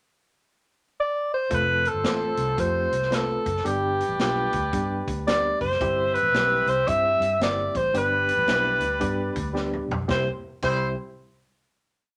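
Swung eighths and a backbeat soul groove drive this joyful, uptempo 1960s-style soul piece, where a roomy alto saxophone with vibrato plays alone from 1.0 s in motif-based song phrases up front. At 1.5 s it is joined by a distant horn section holding swelling long notes in the background, a reedy, lightly overdriven electric piano with fast tremolo comping close-voiced quarter-note chords, a dark, foam-muted fingered bass playing a round, syncopated line with chromatic approach notes, and a swinging big-band drum kit with a punchy kick whose fill at 9.6 s leads into a final chord, all set in a moderate club reverb.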